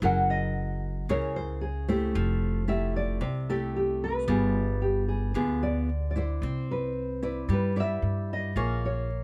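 An up-front, woody upright bass on steel strings anchors this relaxed, breezy bossa nova passage together with a dark, thumb-plucked classical nylon-string guitar carrying the melody and a second, warm nylon-string guitar in accompaniment whose finger squeak comes through the close, dry recording as the chords move from F#9 through Fmaj9 and G7b9 into a new section at 6.4 s on Cmaj9 and Bbm7.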